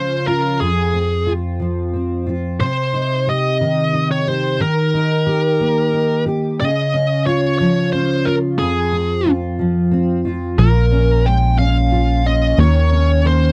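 A bright, distorted high-gain lead guitar carries an aching melody over full-bodied fingerpicked acoustic guitar, double-tracked, in this melancholic six-eight pop ballad in F minor at 60 BPM, with a punchy, dark analog bass with a filter pluck joining at 10.6 seconds as the chords move from Fm, Cm and Eb toward Bbm7, all in a dry, close 1970s-style studio sound with light reverb.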